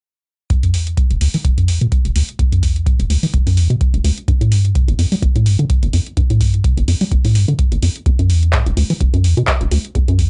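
A 4/4 pulse at 127 BPM drives this raw acid house cut, its sixteenth notes pushed by a light 55% swing. A dry, deep analog kick anchors the groove from 0.5 to 10.3 seconds, while an electro drum machine adds handclaps and metallic hi-hats that sit lower in the mix. Up front, a rubbery square-wave acid bass riff in E minor runs from E1 to G3, its resonant, fast-attack filter plucks decaying into a dark, tube-saturated tone as a filter sweep shapes it throughout. Tuned to A4 = 442 Hz, the recording sounds gritty and dry, with little reverb and a top end that stops at 10.9 kHz. Cut from a longer piece, it keeps a driving, hardware-made feel from start to finish.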